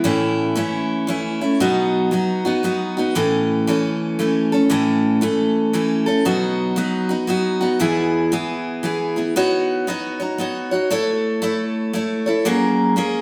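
A bright, full-bodied dreadnought acoustic guitar opens this down-home, heartfelt country piece, picked solo and sitting up front from the very first second. It moves at 116 BPM in a lilting 3/4 with a swung eighth-note feel, tuned to A4 = 443 Hz and ranging from E2 up to C#5. The opening passage rocks between A and B chords, and a second passage begins at 7.8 seconds, moving through E, Badd9, A and F#add9. Finger squeaks on the strings add an intimate, human touch to the picking. The guitar rings out in a stone room whose reverb lingers for 1.4 seconds, giving this short excerpt the feel of a live performance cut from a longer piece.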